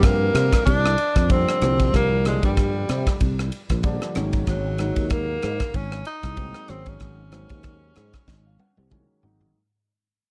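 A 16th-note swing at 94 BPM in 4/4 gives this electric jazz fusion fragment a funky, nocturnal lean, with a crisp, polished drum kit up front driving it on punchy kick, high-tuned snare, ride cymbal, rim clicks and toms, all sitting in an airy studio room. Beneath it, a sustaining fretless electric bass lays down a growly, punchy bass line with an ensemble chorus on its tone. A clear tenor saxophone carries the melody with vibrato in a jazz style, sounding distant and roomy yet still forward. A warm grand piano stays in the background with accompaniment over the C9sus4 and Ab9sus4 harmony. Near the close the piano adds a fill from 7.6 seconds and the drums follow with their own fill at 8.3 seconds, while a fade-out runs through the whole clip and the dark production, with little reverb, carries lossy compression artefacts.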